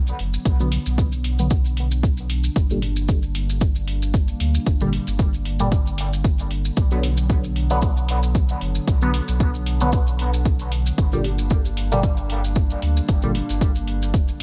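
Dub techno at 114 BPM in B harmonic minor, this deep, hypnotic excerpt swings lightly on a 55% sixteenth feel as an overdriven, up-front kick drum and a round sine sub bass anchor a Bm to Gm cycle, while grainy, close maracas and a gritty analog hi-hat ticking through a large room drive the groove beneath juicy, resonant polysynth stabs that evolve under a constant filter sweep with chorus, phaser and dub echo, and a dark, warbling, nostalgic lo-fi pad breathes with sidechain pumping in an echo-heavy mix.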